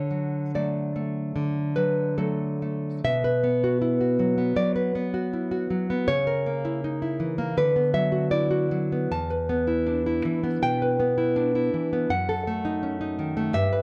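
Tender and nostalgic, this romantic piece for solo classical guitar moves at 79 BPM in 4/4, its beats uneven and pulled by rubato. The nylon-string guitar is fingerpicked and placed up front, its acoustic tone dark, with finger squeak audible. It opens on a D major chord before turning to B minor at 3.0 seconds, where the harmony passes through a diminished chord, reaches E minor at 9.1 seconds and moves on to another diminished chord at 12.1 seconds. The part ranges from E2 up to A5, covering deep bass notes and a singing upper register. Light reverb and a dark, warm production give the guitar an intimate glow in this brief passage cut from a longer piece, which runs to 13.8 seconds.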